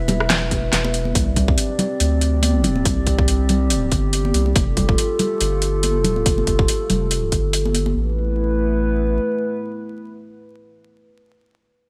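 A swung half-time groove at 141 BPM in 4/4 drives this brooding, dark deep dubstep passage in A minor, cut from a longer piece, where a punchy, tape-warm electronic kick and an up-front kit of huge snare, rim click and metallic hats join a round, soft sub bass and soft-handed congas echoing in the background, all alongside a detuned, wave-folded analog pad with subtle chorus that carries on alone after the drums and percussion drop out by 7.9 s and the bass at 9.2 s, until 11.0 s, with vinyl crackle and light reverb lending a bright 1980s-style digital sheen.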